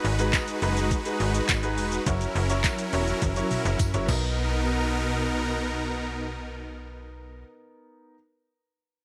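Carefree and summery, this short dance-pop clip at 104 BPM in B major sets huge, detuned supersaw chords and a snappy, metallic FM slap bass up front, both pumping with sidechain, over a warm baby grand piano whose open, long-sustained tone pumps along with them. A smooth, tape-warm R&B drum kit with soft kick, sharp snare, hi-hat, crash, handclaps, shaker and toms rolls into a fill before stopping at 4.2 seconds, while a very quiet, jingly tambourine sparkles until 4.6 seconds. The harmony moves from G#m7 to F#7 and resolves on Bmaj7, all within a digital ambience.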